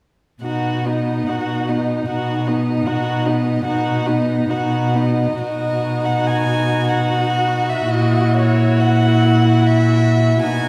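Classical slow romantic movement for string quartet in B major at 72 BPM in a rubato 3/4, tender and warm, where a rich first violin sings the melody with light vibrato, sul tasto bowing and a soft airy attack over a woody, distant second violin line, while a dark, intimate viola accompanies and an up-front cello anchors the bass, all bowed by single players in a reverberant scoring stage heard from further back, the harmony moving from B to F#7/A# at 7.9 seconds in this excerpt from a longer piece.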